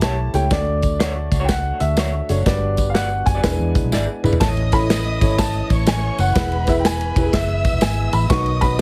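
This uptempo 1960s-style soul excerpt at 123 BPM opens with a punchy, up-front acoustic drum kit and a round, foam-muted electric bass driving a swung 4/4 groove, while a jingly tambourine sits in the background. A dark, intimate grand piano carries the melody with audible action noise, long sustain and plate reverb. Behind it, a woody, boxy upright piano plays accompaniment, and a very quiet, lightly overdriven tonewheel organ holds chords through a slow rotary speaker. A slightly broken-up, lo-fi electric guitar adds picked stabs bathed in plate reverb and tape echo until 4.1 seconds. After a drum fill from 3.9 seconds, a bowed studio string section enters at 4.4 seconds with an expressive second line full of vibrato and portamento, as the harmony moves from A toward E and B. The mood is uplifting and danceable, and the mix is dry and heavily compressed, like a radio broadcast.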